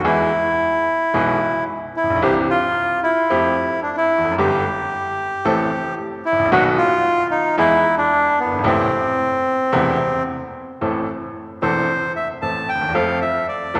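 Bathed in the long, wet reverb of a concert hall, this passionate, dramatic tango fragment in A minor moves at 112 BPM with a rubato feel, as an up-front, reedy and boxy bandoneon carries the melody over a brilliant, woody upright piano whose short-sustained accompaniment runs from the start, before a new section opens at 10.8 seconds.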